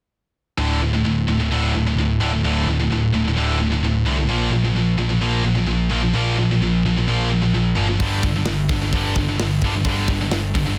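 A dense, heavy and epic heavy metal excerpt in D minor at 129 BPM opens at 0.6 seconds with a bright, high-gain guitar riff up front, a scooped, distorted second guitar tucked in the background and a growly, punchy overdriven picked bass, moving through D5, Bb5 and G5 power chords until a tight, mid-forward drum kit with hi-hat, kick and snare joins at 8.0 seconds, all in a dry, heavily limited modern mix.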